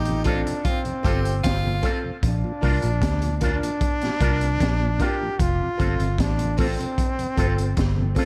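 This short roots reggae excerpt opens with a brilliant, forceful trombone carrying the melody alongside an edgy tenor saxophone, both soaked in dub echo, though the saxophone's second line drops away by 2.0 seconds. Underneath, a vintage muted fingered electric bass sits round and dark, foam-muted and amped, anchoring a straight 76 BPM groove in Bb major. A crunchy breakbeat drum kit sits up front with a punchy kick, high-tuned snare and hi-hat, its saturated, gritty tone and rolled-off top catching some dub echo too. In the background, a mellow tonewheel organ turns on a slow rotary speaker with audible key click, a worn, slightly detuned upright piano adds boxy, woody stabs, and a twangy electric guitar through an envelope filter enters at 0.3 seconds with spring reverb and echo. The harmony moves from F to Bb and back to F, giving the whole passage a sunny, warm mood within a small room ambience.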